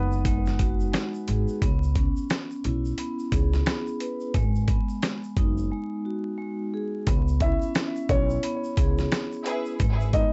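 Swung sixteenths in 4/4 drive this moody, reflective boom-bap hip-hop excerpt, anchored by a gritty, compressed sampler-style kit with a thumpy kick and up-front snare and hi-hat, a woody pizzicato upright bass, and a grainy egg shaker far in the background. A ringing vibraphone with soft mallets and slow motor vibrato holds the accompaniment throughout, while a dark, vintage-sounding upright piano with delay carries the melody at the start, then returns at 7.4 seconds after a break at 5.7 seconds. A lush bowed string section adds a brief stab at 9.5 seconds, all set in a dry, dusty mix with vinyl crackle.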